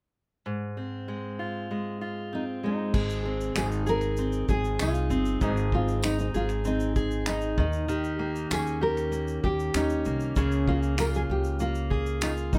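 A fingerpicked steel-string acoustic guitar opens this carefree, sunny acoustic pop excerpt at 0.5 seconds, sitting up front with fresh strings and a touch of finger squeak, before a full-bodied nylon-string guitar takes the melody at 2.3 seconds. At 2.9 seconds a woody, thumpy pizzicato upright bass on gut strings arrives with a cloth-damped, thuddy drum kit of tight kick, dark crash cymbal, finger snaps and shaker, and from 3.6 seconds a jingly tambourine sits in the background. Close, detailed miking with little reverb keeps the sound intimate.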